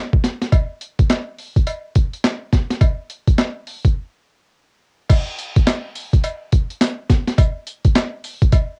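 A swung sixteenth-note groove at 105 BPM in 4/4 drives this short R&B piece, cut from a longer work, with a bouncy, confident mood. A boom bap sampler-style drum kit carries it from 0.1 seconds, built from kick, snare, hi-hat, handclaps, tambourine and crash cymbal. The kit sounds gritty and compressed, with a thumpy kick and a high-tuned snare, and it is overdriven and sits up front. A metallic acoustic cowbell joins at 0.5 seconds, close and dry but set well back in the balance. A break arrives at 4.0 seconds before the second section begins at 5.1 seconds. The dry room and cassette home-recording character give the whole piece a raw, lo-fi edge.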